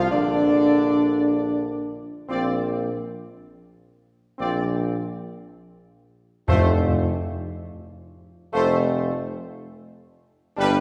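Majestic and regal, this ceremonial classical fanfare moves at a stately 87 BPM in 3/4 with a straight feel, cut from a longer piece. A clear trumpet section carries the melody with light vibrato, over sustained chords from a tight, vintage-toned trombone section and a warm French horn section, the horns sitting most prominently among the brass. A tuba anchors the bass with light vibrato, its sound both up front and roomy. The harmony rests on Bb before shifting to Bbsus2 at 2.3 seconds, and at 6.5 seconds the chords give way as round, soft-mallet timpani on F2 sound until 7.5 seconds. The whole ensemble sits in a wet concert hall reverb with a 2.1-second decay, lending the brass a spacious, ceremonial glow through to 10.8 seconds.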